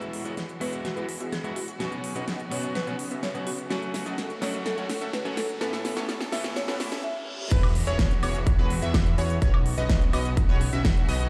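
Over a straight 4/4 pulse at 126 BPM, this anthemic, triumphant festival progressive house piece in E major builds with a woody, buzzing marimba melody echoing through delay, a slightly broken-up electric guitar, lush background strings, a filter-swept supersaw stab riff, a fat detuned analog bass and a big-room kit with huge snare and crisp hats, all rising over very quiet risers and a reverse cymbal until the drop at 7.5 seconds, where an impact lands and a punchy, up-front electronic kick and a catchy plucky unison lead arpeggio join the pumping strings, stab and bass in a large studio reverb.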